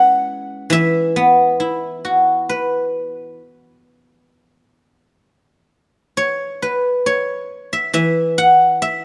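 A bright, silvery guzheng plays alone in this flowing, elegant Chinese traditional fragment, its fingerpicked notes ringing up front across a free, rubato pulse, close and detailed with a touch of light reverb, moving into a new section at 6.2 seconds.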